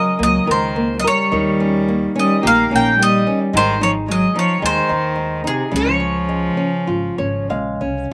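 Passionate and mournful, this fado-style ballad, cut from a longer piece, unfolds with a rubato feel as a bright, double-strung bowl-back mandolin carries the picked melody up front over a soft, floating sul tasto cello line, dark fingerpicked flamenco guitar with audible finger squeak, and a woody, growly pizzicato upright bass entering at 0.2 seconds, while a nylon-string guitar fill arrives at 6.9 seconds, all heard in a dry outdoor setting.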